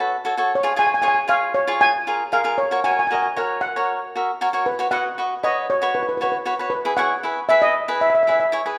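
Calypso at 116 BPM in a straight 4/4, carefree and bouncy, in this short excerpt cut from a longer piece. A lead steel pan carries the melody up front, its metallic shimmer softened by rubber sticks into a mellow tone as it moves between B4 and G#5. Beside it, a picked cavaquinho supplies crisp acoustic accompaniment from E4 to E5, also close and present. The harmony moves from F#m through C#, F# and Bsus2 before landing on E. Both parts sit in a moderate recital-hall reverb that lends a gentle airy bloom, with the pan dropping out at 8.5 seconds and the cavaquinho ringing on until 8.8 seconds.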